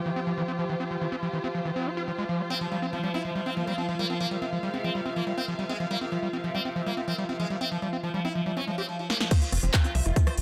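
A straight 4/4 pulse at 141 BPM drives this psychedelic trance excerpt, tuned slightly low to A4 = 435 Hz, with a driving, psychedelic mood. From the start, an evolving, detuned wavetable pad holds sustained chords with chorus and its own reverb, beneath a dark, bowed symphonic string section with vibrato, both pumping against the sidechain. Up front, a screaming acid riff squelches with resonant, distorted sawtooth tone, colored by chorus, cassette-tape grit and tape echo. At 2.5 s a buzzing, plectrum-plucked sitar takes the melody through phaser and tape echo, and moments later a very quiet, nasal vowel-sweep wobble bass adds a faint second line. A big-room dance kit plays a fill at 9.1 s, with punchy snare, crisp hats, handclaps, rim click and crash, leading into the drop at 9.3 s, where a tight electronic kick lands and a round, deep analog bass soon follows. A moderate, lush hall reverb gives the mix its sense of space.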